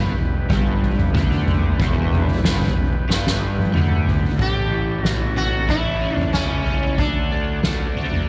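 Hypnotic and trippy, this psychedelic rock fragment, cut from a longer piece, moves in a straight 4/4. A crunchy, double-tracked overdriven guitar picks a riff through a rotary speaker. A reedy combo organ with light vibrato holds sustained chords in the background, while a fuzzed, overdriven fingered bass adds a punchy low end from further back. Up front, a soft-mallet drum kit brings a fat snare, a boomy kick and toms, playing a fill from 3.1 seconds. At 4.4 seconds the harmony shifts from E minor to A, and a mellow, plectrum-plucked sitar takes the melody up front, its buzzing sympathetic strings shimmering through tape echo before the chords settle on D. Light reverb and a small-room ambience frame the whole.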